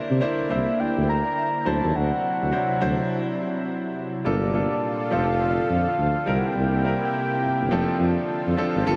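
A dreamy, reverb-soaked mix in a vast ambient space frames this slick, punchy R&B fragment at 104 BPM with a 16th-note swing, where an up-front, soft-attack tuba carries the bass beneath a clear, polished baby grand piano, a lush, detuned sawtooth unison pad holding slow-blooming chords, and a round, dark octave-layered synth lead with vibrato, chorus and delay singing the melody from 0.5 seconds, the harmony moving through C9, D9, Gm9, F6 and C7 with a break at 3.1 seconds before the second section begins at 4.2 seconds.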